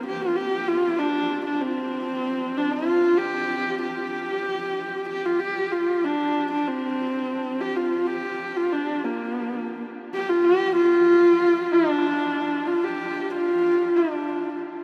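Drenched in a huge, wet reverb that seems to hang far back in the room, this vast, galloping fragment of Mongolian traditional music at 95 BPM in 4/4 places a single husky, up-front horsehead fiddle on the melody from 0.0 to 14.6 seconds, its soft-attack bowed phrases colored by expressive vibrato and gliding portamento as a short theme is stated and then repeated.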